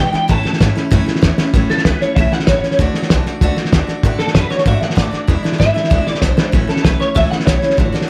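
A twangy, slightly broken-up electric guitar through a small old amp leads this rollicking, upbeat rockabilly cut, taken from a longer piece, opening with a solo that runs to 1.5 seconds before carrying the melody, coloured by ensemble chorus, plate reverb and tape echo. Beneath it, a picked steel-string dreadnought acoustic guitar plays full-bodied accompaniment, with finger squeak audible on the strings. A pizzicato upright bass with gut strings gives a woody, thumpy low end. The cloth-damped drum kit sits up front with a muffled, gritty, lo-fi character, a fat snare, a tight kick and hi-hat, dropping in fills at 1.4 seconds and again at 6.2 seconds. The harmony moves through A, D and E7 before settling back on A, all wrapped in light reverb.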